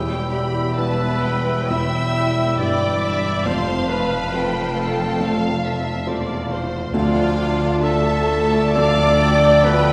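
Cinematic film score for orchestra, this moving, sorrowful excerpt unfolds at a slow, rubato 68 BPM in D dorian, drifting through Em, F and Dmadd9 chords. A rich, distant studio violin section carries the melody with smooth, even vibrato, while a second violin section adds an expressive line higher up with a soft attack. Around them, a mellow solo cor anglais, a pure metal flute and a smooth clarinet weave secondary lines, the flute and clarinet set in the background. A felt-muted upright piano gives intimate accompaniment with audible action noise, joined by a clear, focused viola section, very quiet French horns holding sustained chords and a faint, ringing fingerpicked harp playing arpeggios. Bowed double basses and an expressive cello section anchor the bass, and the whole ensemble plays throughout the 9.9 seconds, bathed in a wet recital-hall reverb with a 1.6 s decay.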